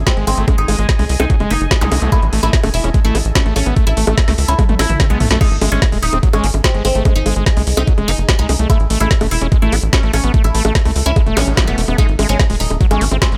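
A driving 146 BPM psytrance pulse in straight 4/4 is set by an up-front, overdriven electronic kick with a knocking punch, layered with an overdriven garage kit of woody snare, metallic hats, bongos, toms and crash, all in a small room ambience, with a drum fill from 4.6 to 5.4 seconds. Beneath it, a tight sequencer bass with a fast filter pluck and tube saturation drives the low end, while a squelchy, resonant acid bass riff adds grit through sidechain pumping and tape echo. Over this, a bright, plectrum-plucked oud with doubled strings carries the melody, coloured by phaser, tape echo and pumping. A deep, moody pad with a slow attack, chorus and built-in reverb sits in the background, while the harmony alternates between G#5 and A5 chords. Brief electronic zaps at 1.8 and 11.4 seconds heighten the alien mood of this dry cut from a longer track.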